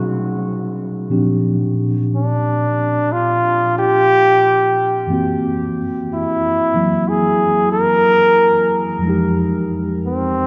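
Swung eighth notes at a slow 60 BPM in 4/4 set the unhurried pulse of this smoky, intimate jazz ballad excerpt, tuned slightly low to A4 = 439 Hz. A mellow, clean tine electric piano opens alone, sitting up front and sounding as if through built-in speakers as it moves through B13, Bb6, Gb7#11 and Fm9 harmonies. At 2.2 seconds a brilliant, punchy trombone takes the solo melody, forceful and jazz-styled with scooped notes, standing slightly louder than the keys. Both parts play on until the cut at 10.5 seconds, as the excerpt is taken from a longer piece. A wet cathedral reverb with a long 5.2-second tail places the pair in a church or concert hall, and the top end is rolled off above 7.7 kHz, giving a soft, dusky sheen.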